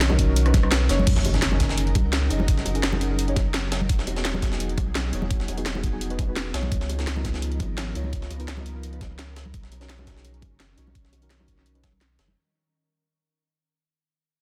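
A straight drum and bass groove drives this dreamy liquid cut from a longer piece. It is built from an up-front, knocking electronic kick; a produced kit with cracking snare, bright hats, rim click and crash; and a gritty, compressed breakbeat sampler-style kit with a high-tuned snare and filtered hats, while soft-handed bongos and congas sit in the background. A round sine sub bass anchors chords moving from Bmaj9 through F#6, Emaj9 and C#13, carried by a dark, nasal chord stab with chorus and dub echo and by an ethereal, glassy FM pad that pumps with the beat under chorus, reverb and vintage 12-bit grit. A faint, metallic vibraphone note rings only in the first 0.7 seconds, a very quiet electronic impact lands at 1.1 seconds, and from there the dense, heavily limited mix fades out.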